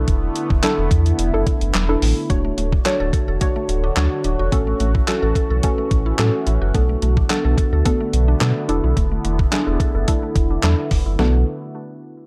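Dance-pop with a bittersweet yet confident mood, this is cut from a longer piece in a straight 4/4 and carries a dark, warm production with light reverb. A deep, round sine sub bass sits up front with the detuned 8-bit drum machine, whose thumpy kick, medium-tuned snare, handclaps and hi-hat have a tape-warm, sampler-style character. A soft, gentle pluck with a detuned, wave-folded edge plays the accompaniment, while an evolving, resonant sawtooth pad holds sustained chords through chorus and phaser, both breathing with sidechain pumping and a low-pass filter. At 2.3 seconds a woody, mallet-like FM pluck enters in the background with arpeggios trailed by digital delay, as a filter sweep runs until 11.2 seconds. The harmony moves from E7sus4 through Dmaj7, A6 and Bm7 before returning to E7sus4 and settling on Bm7.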